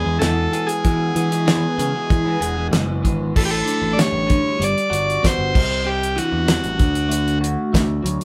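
Trippy and kaleidoscopic, this short psychedelic rock excerpt moves at 96 BPM in a straight 4/4, cut from a longer piece. A buzzy, vintage combo organ carries the melody up front from the start, falling silent at 7.4 seconds while the band plays on. Beneath it, an electric guitar through a small old amp plays a picked, slightly broken-up riff colored by phaser, and an overdriven picked bass adds a dark, round low end. A damped 70s drum kit enters at 0.2 seconds with a fat snare, tight kick, hi-hat and crash, sounding dry and up front. The opening rests on E before the harmony shifts at 3.4 seconds through A7sus4, Gmaj7, C and D, all captured as a band playing live in one room with moderate studio reverb.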